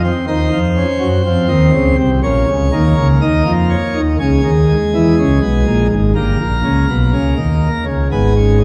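A dark production with vinyl crackle sets the scene, and a scoring-stage reverb with a 1.8-second decay lends the sound a deep, wet bloom. Within that space a lone pipe organ plays a baroque-style three-part fugue, its plenum registration full and brilliant, with mixtures voiced in the baroque manner and placed up front. The mood is contemplative yet driving, moving at 61 BPM in a straight 4/4 and tuned to A4 = 438 Hz. The organ spans G1 to Eb5 across this 8.6-second passage, cut from a longer piece. The harmony runs from F5/Eb through Bbm, A#m7b5/C# and D#7/G before settling on G#m at 8.1 seconds.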